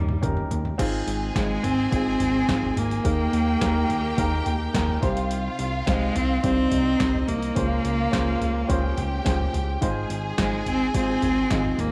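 A straight 4/4 pulse at 106 BPM opens with a drum fill in the first 0.8 seconds, setting up this warm, anthemic piano-driven pop piece in Ab major, cut from a longer work. The deep house drum kit is electronic and layered, with a deep kick, punchy snare, hi-hat, toms and crash cymbal, all given an overdriven grit and a small-room character. Underneath, a chorused synth bass blends pulse, sawtooth and sine tones into a retro, glossy sound with a plucky, fast attack that sustains mellowly. A dark, woody upright piano with short sustain carries the accompaniment while a rich, bowed solo cello sings the melody up front with smooth, even vibrato. From 0.8 seconds a lush studio violin section adds a distant, expressive second line, and the harmony moves from Eb7 through Ab6, Ebsus4, Cm and Dbmaj7 back to Ab6, all within light reverb and digital ambience.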